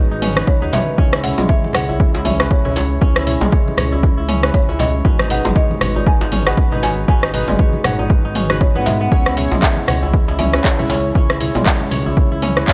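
A deep house kit with dark hats, handclaps, rim click, cabasa and toms opens this hypnotic afro house excerpt at 118 BPM in C# minor, followed by distant, very quiet congas, a punchy, up-front electronic kick and a background djembe. A smooth, gliding sawtooth bass with portamento pumps under crisp, ringing fingerpicked kora arpeggios. A woody marimba melody with analog delay, round chorused analog key stabs with a filter sweep, and a very quiet, detuned, moody pad shift between G#m7 and C#m over a gritty, saturated hardware sound.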